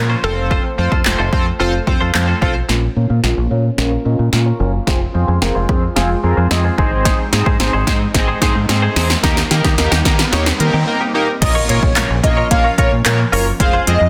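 Driving and confident, this 110 BPM dance-pop excerpt in Bb dorian sets a punchy deep house drum kit and a dark, round fingered electric bass up front under a glossy, pumping chorused polysynth, a twangy clean electric guitar riff, a breathy pad and a brief hollow square pluck, then builds from 2.7 seconds through a drum fill and filter sweep, joined by a very quiet riser at 5.1 seconds, to a drop at 11.4 seconds, where an impact hits and a dreamy, vibrato-laden lead enters over a dense, heavily limited master.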